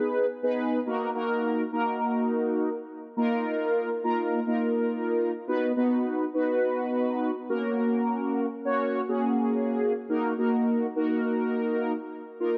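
A mellow synth brass opens this short pop passage on its own, carrying the music from 0.0 to 12.6 seconds in Eb minor at 104 BPM in a straight 4/4. Its sawtooth tone is brassy, round and dark, with a detuned, evolving character, a filter sweep, fast attacks and sustained notes touched by vibrato, all sitting up front between Bb3 and Db5. Chorus, phaser and tape echo color the line, and a moderate, lush hall reverb with a 2.3-second tail surrounds it. The harmony moves from Abm/Cb through Ebm, Bbsus4, B and Gb before settling back on Ebm at 10.1 seconds. Cut from a longer piece, it has a driving, nocturnal mood.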